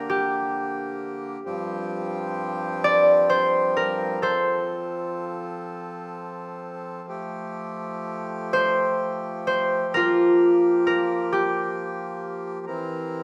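A concert harp and an accordion open together, the fingerpicked harp up front and ringing over reedy, dark accordion chords held low beneath it. This Celtic slow air is mournful and haunting, moving in 6/8 at about 43 BPM in dotted quarters, with uneven, rubato beats that let the phrases breathe. The harp carries the featured part across the whole 13.2 seconds, its acoustic tone staying within a narrow middle range. The accordion sits well behind it, full and smooth, its dry tuning colouring the sustained harmony. The chords move from Gm through Csus4/G, F, Fadd9 and Gm7 before landing on C7 as the passage is cut from a longer piece, all set in a moderate recital-hall reverb.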